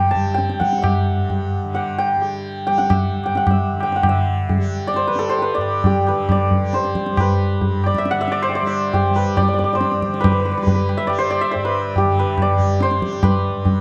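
Set in a straight seven-beat cycle that gradually speeds up, this radiant, meditative Hindustani classical passage is cut from a longer performance, and it moves into a new passage at 4.0 s. A hammered, shimmering santur carries the melody up front, while a low-tuned tabla, also up front with a small-room sound, joins at 0.1 s. Beneath them, a softly plucked, buzzing tanpura drone sits lower in the mix. The whole is bathed in moderate recital-hall reverb with a dark production.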